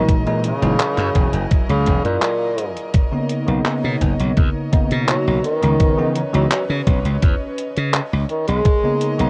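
This woozy, nostalgic vaporwave fragment, cut from a longer piece, opens at once with a tenor saxophone melody over bell-like tine electric piano, soft bowed strings and slap bass, in B major at an unhurried 84 BPM in straight 4/4. The saxophone sings in a low register with vibrato and a warm, classical tone, sounding distant and roomy yet sitting up front, trailed by tape echo. The electric piano is bright and clean, shimmering with ensemble chorus and roughened by vintage 12-bit sampler grit, while the strings float gently and quietly behind it and the glassy slap bass stays punchy and forward. At 0.1 seconds a thumpy electronic kick and a detuned 8-bit drum machine with handclaps and hi-hat come in, sampler-style and gritty, as if re-recorded in a small room, with the kick dropping out at 8.8 seconds. The harmony moves from F#13 through Bmaj9 and C#m9 before settling back on Bmaj9. The whole mix sits in light reverb and digital ambience, coloured by worn cassette tape with a warbly pitch drift.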